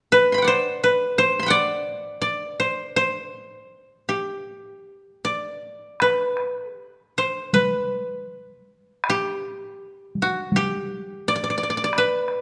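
A fingerpicked koto opens at 0.1 s, its woody, dry tone sitting up front as it carries a calm, austere melody in the G ryukyu scale. This short cut from a longer piece of Japanese traditional chamber music moves in a rubato 4/4 between 74 and 89 BPM. At 6.0 s, solo taiko drums struck with heavy sticks join with a small-room sound, staying lower in the mix beneath the koto until both end at 12.4 s, all set in a recital hall's reverberant space.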